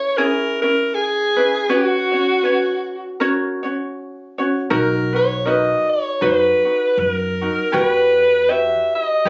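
An edgy, forceful alto saxophone with pop-style vibrato carries the melody up front over a mellow, lightly fingerpicked ukulele in this relaxed, dreamy Hawaiian excerpt with a gentle swing, joined at 4.7 seconds by a woody, thumpy pizzicato upright bass on gut strings, all heard through a small room and a phone's dull, compressed capture.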